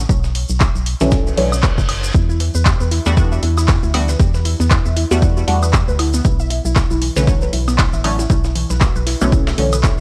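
A hollow, organ-like FM bass sits up front with a dark, percussive bite, driving this hypnotic, moody deep house cut from a longer piece alongside a punchy, tape-warm electronic kick, a swung analog drum machine with handclaps, hi-hat and woodblock, a grainy acoustic tube shaker and a very quiet, gritty sampler-style soul kit of hi-hat and snare. A muted, nasal dub chord stab arrives at 1.0 seconds with phaser, chorus, analog delay and sidechain pumping, an electronic reverse cymbal sweeps in at 1.3 seconds, and from 2.1 seconds a warbling, detuned lo-fi pluck plays arpeggios through chorus, phaser, cassette tape and delay. The chords move from Bm11 to Em11 and back, and the whole mix has a dry, gritty hardware-and-cassette character.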